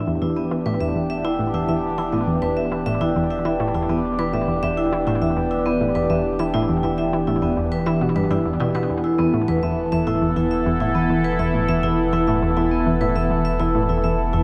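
Hypnotic and expansive, this sequencer-driven ambient space music, cut from a longer piece, rests on a single Em7 chord. An up-front, resonant pad sweeps through chorus and phaser, while a metallic vibraphone with medium hard mallets and motor vibrato rings out arpeggios through delay. A bright, nasal analog pluck riff with chorus and delay sits alongside a deep sine sub bass with tube saturation that fades in across the full 14.4 seconds, under a moderate plate reverb and a dark production.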